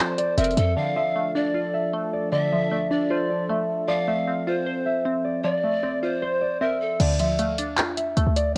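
Dark, eerie trap in D minor at 154 BPM with a half-time feel, this short excerpt is built on a mellow, ringing concert harp melody and a crystalline, chorused wavetable pluck, both softened by a low-pass filter and cassette tape. A breathy, distant bamboo pan flute with tape echo and a smooth, detuned sawtooth pad float over F and D minor chords until 7.0 s. Punchy, tight 808-style bass and a trap kit with bright hats, handclaps and crash appear briefly at the start and return at 7.0 s, all in a light digital ambience with a lo-fi home-cassette character.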